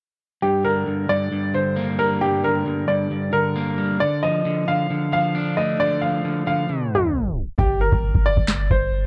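A dark, warm production with light reverb gives this hard-hitting, menacing trap excerpt a murky sheen, cut from a longer piece in G minor at 134 BPM with a half-time feel. From 0.4 seconds, a clear, worn concert grand piano carries the melody up front with short sustain and a touch of delay, while a twangy, fingered electric guitar, slightly broken-up, sits close beside it as accompaniment over a move from G minor to D minor. A tape stop starting at 6.7 seconds drags the opening to a halt before the beat arrives at 7.6 seconds, returning to G minor. There a booming analog drum machine hits with a deep kick, crisp snare and handclaps, and a boomy, mellow 808-style bass with a fast attack and a noise layer sounds a low G that decays. An electronic impact sits in the background beneath the drop, leaving the brief ending heavy and ominous.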